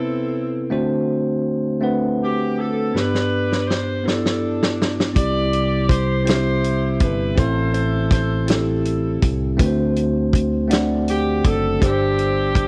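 A bright, lightly vibrato saxophone section carries the melody over bell-like, clean tine electric piano in this hopeful, reverent slow gospel excerpt in 6/8, before a dry, fat-snared soul drum kit enters with a fill at 3.0 seconds and a round, punchy fingered electric bass joins at 5.2 seconds, all under light reverb and the worn, warbling pitch drift of old cassette tape.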